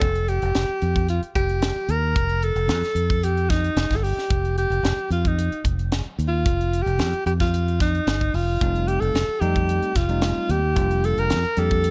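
A polished studio recording with a touch of reverb frames this short, bright and soaring slice of electric jazz fusion, cut from a longer piece and moving at 112 BPM in a straight 4/4 feel in F mixolydian, tuned to A4 = 435 Hz. Up front, a clear alto saxophone carries the solo melody in a jazz style, close-miked with a soft attack and light vibrato. A fingered electric bass sits equally forward with a warm, direct tone, while a crisp acoustic drum kit, airy in its studio room, adds hi-hat, a punchy kick and a high-tuned snare. At 8.6 seconds a bell-like tine electric piano joins with clean, bright accompaniment. The harmony circles around F, moving through Fsus2, F9 and Ebadd9/F before settling on Gm9/F.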